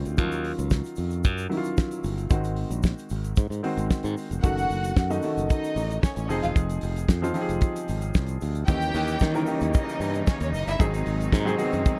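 This danceable, glamorous disco excerpt at 113 BPM features a damped 70s drum kit, its fat snare and tight kick sitting dry and up front beside a growly, bright fingered electric bass and a clear grand piano whose action noise is audible as it comps through chords like Ebm9, Ab7 and Gbm6. A grainy tube shaker sits in the background, a lush violin section with expressive vibrato carries a second line from 4.4 seconds, and a distant chamber string section adds intense sustained chords from 8.7 seconds over an Eb7b9. The production is dark and warm, with little reverb.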